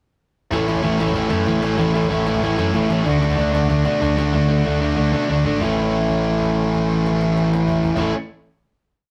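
A rough rehearsal-room recording with moderate studio reverb captures this short, complete punk rock piece, upbeat and rowdy at 188 BPM in A major, moving from A to D and back. Two bright, up-front electric guitars drive eighth-note chords, one overdriven and compressed playing power chords, the other tight and distorted playing barre chords, over a growly, punchy overdriven bass and a very quiet, woody cajon with faint snares and a two-step groove. The cajon's kick and snare drop out from 4.3 to 5.6 seconds before the band lands on a final held A chord that rings until 8.0 seconds.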